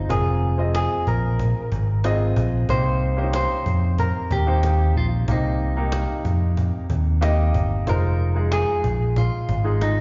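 Piano-driven pop in F minor at 93 BPM, this short cut from a longer piece moves in a straight 4/4 with a driving, earnest mood. A dark, clean picked electric guitar carries the melody between Eb4 and C5, its line touched by slapback echo and delay. A clear upright piano with a woody tone and short sustain plays the accompaniment across a span from C3 to Eb5, also carrying slapback echo. The fingered electric bass sits up front and punchy, its amped sound the loudest part, anchoring the low end from F1 to F2, while a cajon with faint snares and a small-room feel enters at 0.1 seconds with its own slapback echo. The harmony moves from Fm7 to Cm7 at 2.7 seconds and back to Fm7 at 7.9 seconds, and the whole has the character of a live gig heard through the venue's PA, with a recital-hall ambience and a muted top end.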